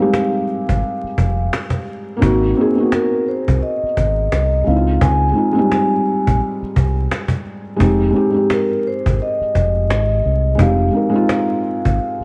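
A hazy, reflective lo-fi hip hop fragment with a swung sixteenth feel opens on a felt-muted upright piano, boxy and intimate with audible action noise, beneath a ringing vibraphone melody played with soft mallets and slow motor vibrato through analog delay; a snappy, hard-handed cajon with vintage 12-bit sampler grit joins at 0.1 seconds and a round, punchy dub fingered electric bass follows at 0.7 seconds, the whole mix steeped in worn, warbling old tape, vinyl crackle and small room reverb.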